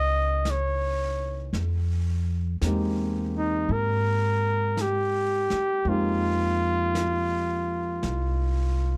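This short excerpt has a dark, warm production with little reverb, setting a wistful, smoky jazz ballad in F minor at a slow 55 BPM, swung in 4/4. A breathy, mellow trumpet carries the melody up front from the start, its scooped notes and smooth top ranging from Eb4 to Eb5 in a solo jazz style. Beneath it, a concert grand piano with deep bass and long sustain plays the accompaniment, moving from a rootless Gb13 to Fm11 at 1.5 seconds. A pizzicato upright bass, woody and thumpy with steel strings, sits up front in the low register between C2 and Ab2. Brushes on a medium-tuned snare and hi-hat enter at 0.5 seconds, played softly in a small room behind the other parts.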